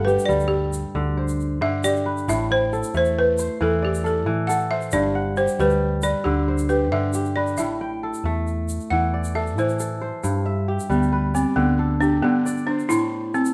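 Set in a straight 12/8 at 90 BPM in G major, this flowing West African traditional excerpt features a woody, buzzing balafon soloing up front from the start to 10.2 seconds over ringing fingerpicked kora arpeggios, a round, punchy hollow-body electric bass and a grainy tube shaker, all under light reverb as the chords sway between G and Am.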